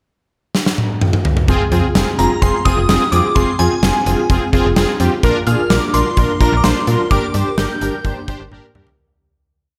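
A straight 4/4 synth-pop groove at 128 BPM opens with a huge arena drum kit, its punchy kick and gated-reverb snare rolling through a fill from 0.5 seconds, before a snappy, slap-like FM bass, fat detuned analog synth brass pulsing eighth-note chords with chorus, and a mellow vibraphone rising in sixteenth-note arpeggios behind slapback echo arrive at 1.5 seconds, joined at 2.2 seconds by a shimmering, dreamy FM bell calling out motifs through ensemble chorus, all moving from F minor through Bb to G minor in a cool, melancholic mood until the fade-out from 7.1 seconds.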